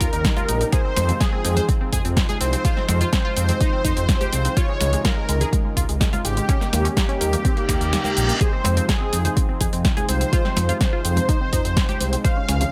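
Progressive house at 125 BPM in F minor, emotional and expansive, with a thick, bold, bright unison lead carrying the melody over a soft supersaw second line, a mellow analog pad in the background, a tight, driving sequenced synth playing arpeggios, and a deep, rumbling detuned saw bass, all pumping with sidechain, while an overdriven deep kick sits up front beside a punchy deep house kit of snare, hi-hat, finger snaps and cabasa, ringing congas enter at 0.4 s, and a reverse cymbal sounds at 7.6 s as the kick drops out briefly before the chords return to Fm7 at 8.4 s.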